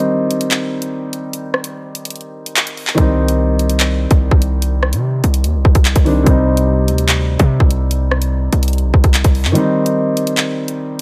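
A hard-hitting 808-style bass dominates this tense, ominous drill excerpt, arriving at 3.0 seconds with a punchy, heavy sine tone, a layer of noise, a fast attack and a decaying tail that sits up front until 9.5 seconds. The track runs at 146 BPM in 4/4 with a half-time feel, resting on a single C minor chord throughout. A dark grand piano carries the accompaniment from the start, its mellow tone rounded off by a low-pass filter. The electronic drill drum kit plays handclaps, rim clicks, warm hi-hats and a hard-clipped kick, though the kick drops out briefly at 2.2 seconds before the bass lands and again near the close. The opening stretch works as a break before the low end enters, and the whole mix stays dry and close, with all three parts placed up front.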